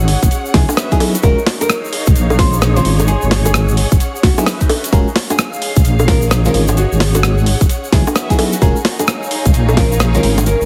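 UK garage in a swung two-step groove, late-night and moody, cut from a longer piece: a deep, dark wobble bass with chorus sits up front beside a punchy, layered electronic kick and a gritty, overdriven sampler-style breakbeat kit of bongos, hi-hat, rim click and snare, while a grainy egg shaker adds brightness, a lush bowed string section pumps under sidechain, glassy, bell-like FM electric piano stabs ring through chorus and tape echo, and a fingerpicked nylon-string guitar carrying vintage 12-bit sampler texture and tape echo sits in the background, the whole mix given a heavily compressed, radio-like sound with light reverb over a cycle of minor-eleventh and suspended seventh chords.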